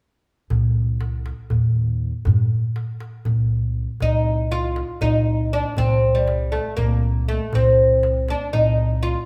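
A growly, pizzicato upright bass and a crisp, metal-shelled darbuka open this soulful, hypnotic passage from a Turkish makam ensemble in C makam huseyni, moving in a straight 7/8 at 239 BPM in eighths, before a bright, woody, fretless, plectrum-plucked oud with double strings comes in up front at 4.0 s, the band playing live together in a large studio with a wet reverb.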